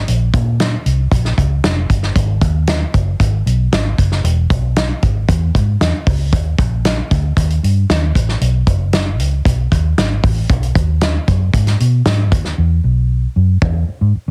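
A straight 4/4 groove at 115 BPM drives this joyful, danceable slice of uptempo 1960s-style soul, cut from a longer piece. A dark, round, foam-muted fingered electric bass sits up front alongside an acoustic kit of hi-hat, punchy kick and medium-tuned snare, recorded naturally in a small room. A drum fill arrives at 12.6 seconds, and the whole track carries a dry, heavily compressed radio sound with a cassette-tape character.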